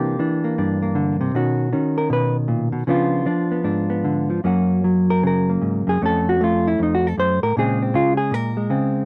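A dark, clean hollow-body electric jazz guitar plays fingered and up front throughout this smoky, moody solo jazz fragment, drifting in a loose, rubato swing over lush extended chords from C9 through Bmaj9 and Db7b9 to Bbm9, captured with close, detailed microphones and a light touch of reverb.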